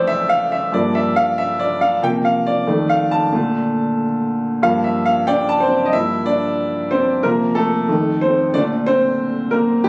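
Captured on a phone in a club-like room, this short cut from a longer R&B piece has a light reverb around a solo grand piano that sounds warm, boxy and up front. The mood is late-night and introspective, with a gently swung 16th-note feel in 4/4 as the piano moves through jazzy chords such as Gm7, C7sus4 and Bbmaj7. It shifts into a second section at 5.9 seconds and closes on a Bbmaj9 at 8.5 seconds.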